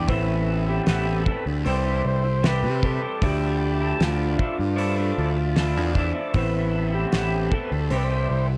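Mysterious and trippy, this short cut from a longer psychedelic rock piece moves at 77 BPM in a straight 4/4, set in A minor over a chord cycle that opens on Amadd9 and passes through C and Dmadd9. A fuzzed, overdriven picked electric bass and a damped 70s drum kit sit up front, the kit dry and dark with a fat snare, a tight kick and a rolled-off top on hi-hat, kick and snare. An electric guitar through a small old amp plays a slightly broken-up, lo-fi riff colored by flanger, while an overdriven combo organ carries a reedy melody with light vibrato and dub echo. In the background, a bright tonewheel organ holds sustained chords with key click, chorus vibrato and a slow rotary speaker. A softly plucked, buzzing tanpura drone shimmers barely audibly until 6.8 seconds, all within a small, echo-heavy room.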